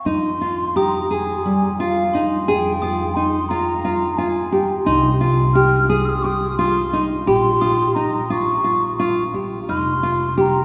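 A breathy, hollow wooden flute opens this pensive, restless contemporary chamber piece in 7/8, carrying the melody with vibrato, and is soon joined by an up-front, full-bodied, fingerpicked nylon-string guitar spinning arpeggios, a woody, dark pizzicato upright bass, and, from 0.8 seconds, a bell-like glockenspiel played with soft plastic mallets in the background, the ensemble set in a long cathedral reverb in this excerpt from a longer work.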